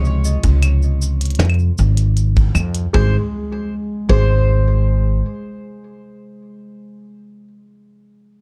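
The production is dark and warm, with little reverb, in this short folktronica fragment cut from a longer piece. A mellow, woody mandolin carries the melody on doubled strings, while a fingerpicked concert harp plays ringing arpeggios beneath it, both touched with delay. A growly pizzicato upright bass with steel strings sits up front. A tiny electronic kit of clicky hats, claves, shaker and a small snare plays until 2.9 seconds, joined from 0.4 seconds by a punchy acoustic kick recorded in a bright stone room. At 2.9 seconds the harmony moves from Db to Ab, and a clanky, bell-like toy piano with plastic hammers, slightly out of tune, adds a delayed second line in the background. The mood is playful and pastoral, with a straight feel.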